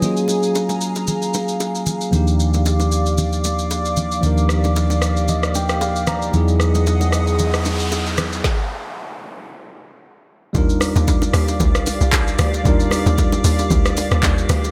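A tine electric piano, clean through its built-in speakers, opens on a Gbmaj9 chord alongside a hollow, flute-like pad with chorus and sidechain pumping, while an overdriven afro-pop kit with deep kick, woody snare and metallic hats sits up front over congas and bongos played with hard hands in the background, setting a relaxed amapiano groove at 114 BPM in Eb major with a swung 16th feel. A dark, round hollow-body electric bass enters at 2.1 seconds, the electric piano plays a fill, and an electronic noise sweep leads into a stop at 8.4 seconds. At 10.6 seconds the music drops back onto Ebmaj9 with a tight, punchy log drum bass, all bathed in a dreamy plate reverb in this excerpt from a longer piece.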